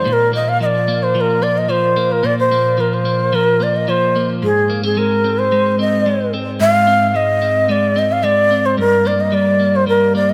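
A mellow, airy shakuhachi with vibrato carries the melody over clean, picked electric guitar arpeggios softened by analog chorus, both parts touched with delay and set up front in a moderate plate reverb, giving this ethereal, dreamy dream pop fragment in Ab lydian at 110 BPM a floating glow as the chords move from Bb5 to Ab to Gm across its 10.3 seconds.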